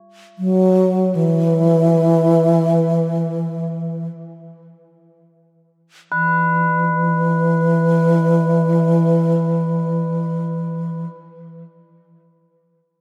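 A long plate reverb with a 3.5-second tail soaks this dreamy mix, giving it a haunting atmosphere. The piece is meditative world music in free time, cut from a longer work. Tubular bells open at 0.0 seconds as a quiet textural bed, their tone metallic and solemn yet mellow from a padded hammer, captured close and dry with a full, ringing body in a narrow range around B4 to C#5. At 0.4 seconds a bass flute enters up front with the melody, low between E3 and F#3, its breathy, expressive voice shaped by vibrato and a soft attack and trailed by tape echo. The music moves into a new section at 6.1 seconds, and the flute and bells carry on together until the fragment breaks off.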